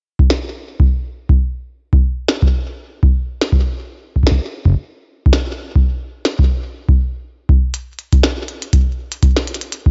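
The recording sits in a digital ambience with its top end rolled off above 7.7 kHz, giving this short cut from a longer IDM piece a dim, enclosed sound. An eerie, intricate mood comes from two up-front, tape-warmed drum parts set in 4/4 with a swung sixteenth-note feel. A deep analog electronic kick drum enters at 0.2 seconds and anchors the bottom, sitting as the most prominent layer. A glitchy, produced drum kit joins at 0.3 seconds with a tiny snare and clicky hi-hats, set lower in the mix and trailed by delay. The two parts run together throughout, the kit stopping at 9.8 seconds just before the kick closes out the passage.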